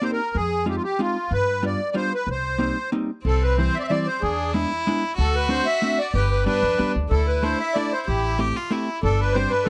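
A reedy, sweet accordion leads this brisk musette waltz at 186 BPM in 3/4, its light tremolo tuning placed up front as it carries the melody. This whirling, nostalgic fragment is cut from a longer piece. A dark, clean hollow-body electric jazz guitar, picked and compressed, supplies the accompaniment, and a woody, thumpy upright bass with steel strings plays pizzicato beneath it. The music opens in C minor and turns to C major at 3.3 s. Just before that shift, at 3.2 s, a single bowed violin adds a nasal, earthy second line with light vibrato and an airy bow. The sound is a dry, close studio recording in a 1970s style.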